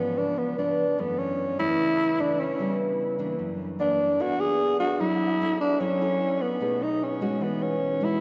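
A straight 4/4 bossa nova feel carries this breezy, relaxed fragment of a longer piece, with a fingerpicked nylon-string guitar in classical style moving through chords such as F#m7, Bm9 and Emaj9. Up front, a tenor saxophone plays the solo melody in a dark, breathy jazz subtone, with vibrato, scooped notes and a raspy growl softened by a gentle attack. Both parts ring through a long, wet cathedral reverb that places them in a church or concert hall.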